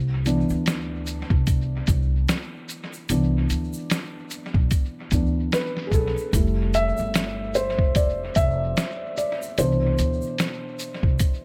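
A relaxed 74 BPM groove in 4/4 swings its sixteenths at 60%, setting a nostalgic, cosy lo-fi hip hop mood in C major. A woody pizzicato upright bass on steel strings opens at the very start, and the felt-muted upright piano, sampler-style drum kit and egg shaker join at 0.3 seconds. The piano sits up front as the featured voice: soft, mellow and dark, with thick felt and a cassette-tape colour, moving from Cmaj9 to Fmaj9 at 6.3 seconds before settling on Cmaj7. The compressed, muffled drum kit, also up front, pairs a thumpy kick with a medium-tuned snare, hi-hat and shaker, roughened by vintage 12-bit sampler grit and dub echo. A grainy, bright egg shaker sits distant and low in a large room, while light studio reverb and an echo-heavy mix give this short clip from a longer piece an intimate, hazy glow.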